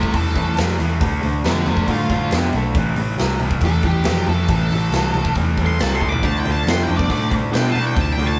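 Captured live in one stone-walled room with moderate reverb, this heavy, brooding blues rock and southern rock excerpt in A minor at 138 BPM pairs an up-front, lo-fi, double-tracked overdriven garage guitar riff and a round, foam-muted picked bass with a punchy, gritty drum kit that fills at 6.0 seconds, while a dark octave-fuzz lead guitar carries the melody through analog delay over a slightly broken-up, compressed second guitar line sitting in the background, moving from A5 through Dm and Am.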